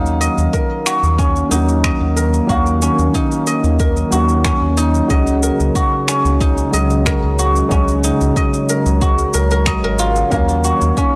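A dry, gritty hardware recording with transformer saturation, light reverb and lossy compression artefacts carries this warm, hypnotic organic downtempo passage cut from a longer piece, where a silvery, ringing guzheng played with fingerpicks sits up front with tape-echoed arpeggios over a muted felt upright piano whose action noise is audible through its own tape echo and sidechain pumping, a smooth chorused analog pad holds sustained chords, a round, dark analog bass with tube saturation and pumping anchors the low end, and overdriven electronic shaker and finger snaps enter at 0.1 s, joined by a deep, overdriven electronic kick from 0.5 s, all moving from Ebm7 to Dbsus4 and back.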